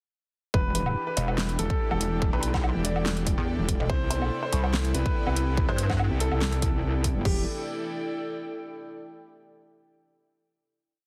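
This short, aggressive piece of heavy wobble dubstep opens at 0.5 s straight into the drop in E minor at 143 BPM with a half-time feel. A concert grand piano repeats a riff melody with delay over a lush, detuned supersaw pad pumping in the background, while a metallic, saturated FM wobble bass sits up front beside a punchy, overdriven kick. A dubstep kit adds a huge snare, metallic hats, woodblock and crash, and an airy, breathy pad with chorus drifts through slowly shifting chords from Em7 to Cmaj7. A pulsing pluck wobble bass answers the other bass until 6.1 s, and the beat stops at 7.3 s, leaving a final Em7 chord on the airy pad, all within a heavily compressed, radio-like sound with light reverb.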